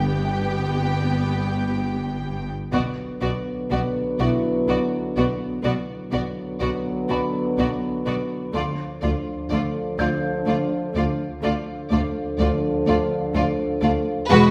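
Mysterious and tense, this cinematic suspense cue in a slow 3/4 sets a smooth violin melody with light vibrato over a lush second violin line with portamento, while background violas accompany and dark French horns and trombones sustain chords above rich cellos and distant double basses, and a soft, boxy felt-muted upright piano adds intimate texture as the harmony moves from G to B minor at 2.7 seconds and to D minor at 8.5 seconds, all in the moderate reverb of a scoring stage.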